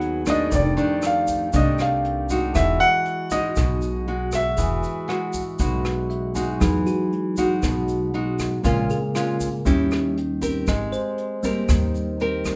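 Bossa nova with a sophisticated, sunny mood, heard in a short cut from a longer piece, set in straight 4/4 with light reverb. A grand piano carries the melody up front until 6.1 seconds, over a small, fingerpicked nylon-string guitar, a woody, thumpy pizzicato upright bass on gut strings, and a small-room brush drum kit with a dark, rolled-off top, a punchy kick, hi-hat and rim click. A soft pipe organ on flute stops, with a touch of chiff, holds sustained chords in the background through the opening section, while a grainy, mellow tube shaker joins at 0.3 seconds. The bell-like tine electric piano comps through the opening section, slips in a fill just before the second section, then takes a clean, direct solo from 6.6 seconds to the end. The harmony moves from G#m7 through F13 and Emaj9, then later through A#m7 and D#7b9 to G#maj9.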